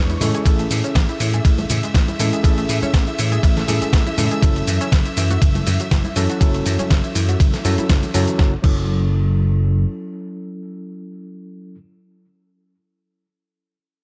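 A dry, close-sounding nu-disco drop with a cosmic, groovy feel and a gently swung pulse, built on an up-front, thumpy electronic kick and a gritty, dusty soul sampler-style kit with a fat snare, hi-hat, ride, crash and shaker, plus very quiet, soft-handed congas. A growly, punchy slap bass drives the groove under a worn, slightly out-of-tune tine electric piano with tape echo, while a lush violin section with vibrato holds sustained chords and a round analog pluck plays arpeggios with chorus and analog delay in the background, both pumping against the kick. The harmony moves from Amaj7 to F#m7, and after the bass drops out at 9.8 seconds the electric piano carries on alone until 11.8 seconds.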